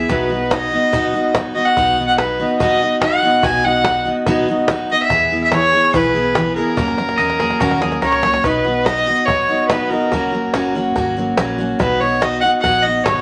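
A rich, bowed fiddle with light vibrato carries the melody up front in this nostalgic, sunny honky-tonk and classic country excerpt in B major at 144 BPM, over a bright, jumbo-bodied picked acoustic guitar with audible finger squeak. A dark, round, foam-muted electric bass sits in the background, while a woody cajon played with soft hands adds a drum fill leading into the second section at 8.4 seconds. A clean, twangy electric guitar slips in a brief second line from 7.2 to 8.2 seconds, all set in a wet studio reverb.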